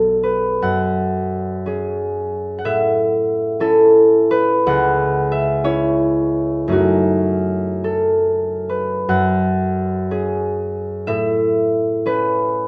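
A solo concert harp, mellow, ringing and up front, opens this short cut from a longer classical piece: a mysterious, gentle, fingerpicked passage in 6/8 with a rubato feel at roughly 45-64 BPM in dotted quarters, set in F# dorian with A4 tuned to 445 Hz, spanning B1 to G#5 over chords moving from Bm6 through F#madd9, A, C#m7 and F#m6, with its opening idea returning at 9.1 s to close on Aadd9, all bathed in a moderate stone-room reverb.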